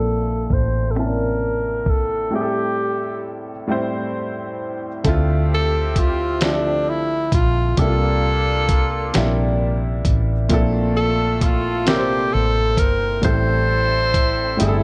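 A slow six-eight R&B groove at 44 beats per minute in D minor sets a late-night, yearning mood in this short cut from a longer piece. A breathy tenor saxophone carries the melody with vibrato and scooped notes, its smooth top touched by slapback echo, while an intimate concert grand piano with audible action noise and deep bass supplies the accompaniment. Underneath, a foam-muted fingered electric bass sounds round and punchy, and a gritty sampler-style drum kit enters at 0.5 seconds with finger snaps, hi-hat, a thumpy kick and a fat snare, all carrying a tape-warm, small-room character. A filter sweep colours the opening, a break runs from 2.3 seconds, and at 5.0 seconds a tight vintage horn section joins in the background with stabs as the harmony moves from Dm9 through C9sus4 back to Bbmaj9#11 and Am7. Drums and piano add fills at 14.6 seconds, and the dark, low-pass-filtered production sits in light studio reverb.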